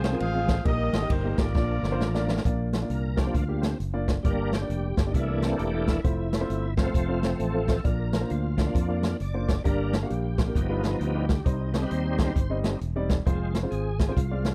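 A swung 133 BPM groove in 4/4 drives this hopeful, reverent uptempo gospel passage, with a punchy, up-front big-band drum kit and a dark, round fingered electric bass beneath woody upright piano accompaniment. A smooth jazz horn section carries the melody until 2.2 seconds. After a drum fill, the bright, shouting tonewheel organ, lightly overdriven through a fast rotary speaker with chorus vibrato, solos from 2.5 seconds to the end over chords moving from F minor through C13 and G7b13, all captured in a dry, close 1970s-style studio sound.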